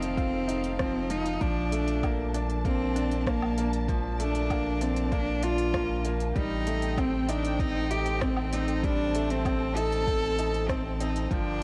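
A straight 4/4 groove drives this melancholic, hypnotic piano and strings electronica, cut from a longer piece, with a deep house drum kit of smooth hi-hats, rim clicks and woodblock alongside a layered electronic kick that joins at 0.2 s. Both drum parts carry studio reverb and a cassette tape coloring. A round analog bass sits up front in the low register, nasal and sine-like with a fast attack, pumping under sidechain compression. A clear upright piano plays a woody, intimate riff with audible action noise and short sustain, treated with cassette tape and analog delay. Over this, a close solo cello carries the melody with vibrato, a soft attack and an airy sul tasto bow, while a dark, lush symphonic string section holds distant sustained chords in the background, also pumping and tape-colored. The harmony moves from F7 to Bbmaj7 and then to Am7b5 at 6.4 s, all in a small room with light reverb and the feel of a home cassette recording.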